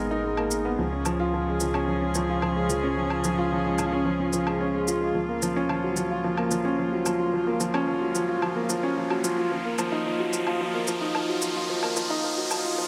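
Piano and strings electronica at 110 BPM in 4/4, cinematic and intimate, cut from a longer piece that builds throughout under a filter sweep, with chords moving from G#madd9 through C# and F#maj7/C# to D#madd9. A mellow, woody upright piano riff with delay sits up front over sustained, bowed string quartet chords played sul tasto with vibrato, while a round sine sub bass anchors the low end and an overdriven, layered woodblock and shaker pattern enters at 0.4 seconds. An electronic riser joins at 7.3 seconds, and a huge ambient reverb and a high-pass filter shape the whole sound.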